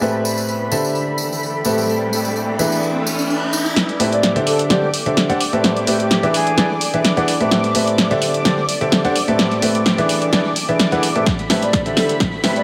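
A clear, intimate baby grand piano leads this bittersweet, energetic piano house passage at 128 BPM in A minor, playing an up-front riff with audible action noise, treated with a low-pass filter, delay and sidechain pumping over a cycle of Am9, D9sus4 and E7. A silky, detuned analog string pad holds sustained chords with ensemble chorus and vibrato, pumping alongside the piano, while a cloudy, very quiet granular pad drifts beneath with a slow attack and long release. In the opening, the only percussion is a small-room tambourine, joined by an electronic riser from 1.3 s, before a punchy, tape-warm analog drum machine arrives at 3.8 s with filtered snare and hi-hats, building through a continuous fill. A mellow, airy concert flute sings a distant, expressive melody with vibrato and delay from 4.1 s, returning near the close as an electronic kick and a second riser push toward the next section. 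A moderate lush hall reverb gives the mix its spacious glow, and the passage is cut from a longer piece.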